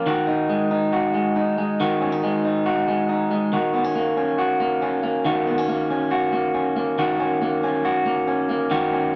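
Bright and nostalgic, this short indie pop fragment moves at 139 BPM in a straight 4/4, with tuning set to A4 = 439 Hz. A solo electric guitar, played through a small old amp, carries the whole 9.2 seconds, sitting up front with a picked, twangy tone that is slightly broken-up. Its part stays between D#3 and F#4, opening on a D#madd11 chord before moving to D#m7 at 3.5 seconds. Light reverb and a digital ambience give the room a gentle sense of space. Cut from a longer piece, the moment feels like a fond glance back at a sunny memory.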